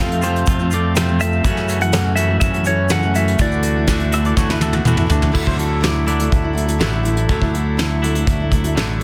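A bright, slide-played lap steel carries the melody through a digital delay until 4.8 seconds in this nostalgic, jangly folk rock and heartland rock piece at 123 BPM, over a full-bodied jumbo acoustic guitar with finger squeak, a twangy, clean electric guitar riff, a punchy fingered bass and an up-front brush kit with a fat, softly clipped snare that plays a fill at 4.4 seconds, while a fingerpicked pedal steel adds volume swells as a second line and a grainy tube shaker sits in the background.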